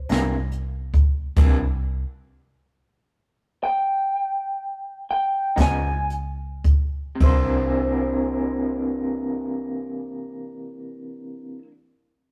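A slow 12/8 blues in C mixolydian moves at 35-48 BPM on the dotted quarter, slowing down over its first 7.2 seconds in this swaggering, soulful fragment of a longer piece. Up front, a dark, slightly broken-up lead guitar with harmonic tremolo carries the melody, while a second guitar with tremolo and a warmer tone accompanies underneath; both are lo-fi and compressed through small old amps. They sit over a round, foam-muted, punchy bass and an acoustic brush kit with dark cymbals, a high-tuned snare and a boomy kick that stops at 7.5 seconds, while the chords move from C5 to Db9 and land on C9 in a rough rehearsal-room sound with light reverb.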